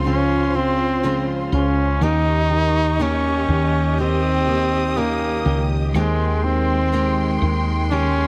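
A slow pop ballad at 61 BPM in 4/4 with a straight feel, heartbroken and longing in mood, cut from a longer piece. A close-miked flugelhorn carries the solo melody up front from 0.1 s, singing in a pop style with vibrato and scooped notes, while a round, hollow-body fretless electric bass sits equally forward with a woody, amped tone. Behind them, a lush studio string section holds bowed chords with expressive portamento and a smooth top. A concert grand piano with deep bass adds accompaniment in the background, and a bright, fingerpicked flamenco guitar plays arpeggios touched with tape echo. The harmony moves from Dbmaj7 to Eb7, settling on Abmaj7/Eb at 5.9 s, all within light reverb and a small room ambience.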